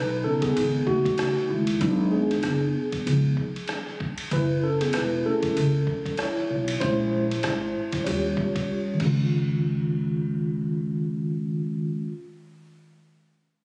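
A mellow, clean tine electric piano sits up front and carries a solo through the first 9.3 seconds of this nocturnal, smoky jazz-hop excerpt, its tone colored by the instrument's built-in speakers. Beneath it, a woody, dark pizzicato upright bass holds the low end, while a gritty, pitched-down, sampler-style trip hop drum kit with a thumpy kick, hi-hat, ride, rim clicks and crash enters at 0.4 seconds and stops at 9.2 seconds, its compressed, tape-warm sound re-recorded in a small room. The groove swings on 16th notes, and the recording, captured on a phone in the room, carries light reverb, studio reverb and compression.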